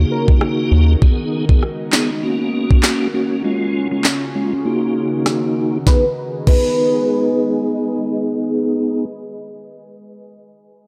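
Sultry and tough, this short dancehall excerpt moves at 99 BPM in 4/4 with a swung sixteenth-note feel, set in G# dorian over a cycle of D#m, G#m, F# and C#. A lightly overdriven tonewheel organ carries the accompaniment up front, piping and scooped with key click, chorus vibrato and a slow rotary speaker, while an ethereal, airy pad holds sustained chords alongside it through a phaser, ensemble chorus and its own reverb. A round analog bass sounds a deep, decaying D#2 at the very start before dropping away after 1.0 seconds. An electronic afro-pop drum kit runs from 0.3 to 6.7 seconds with a knocking kick, sharp snare, rim clicks, handclaps and crash, the kick falling silent between 4.7 and 5.9 seconds while a filter sweep runs through the opening stretch. A velvety synth lead, smooth and mellow with chorus, vibrato and tape echo, flickers briefly at the outset and returns at 5.9 seconds for a short phrase as the music turns to a new section. 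The dark production sits in light reverb and digital ambience.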